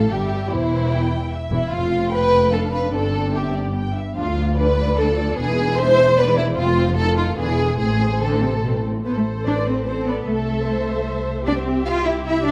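Restless and stormy, this quick classical-period movement for string orchestra at 149 BPM in 3/4 turns from C major to A minor at 4.2 s, with a distant, expressive violin melody bending with portamento above a focused, up-front second violin line, lush viola accompaniment, soft-attacked cellos and an intense, clear double bass section, captured with light reverb and close, detailed microphones in a fragment cut from a longer piece.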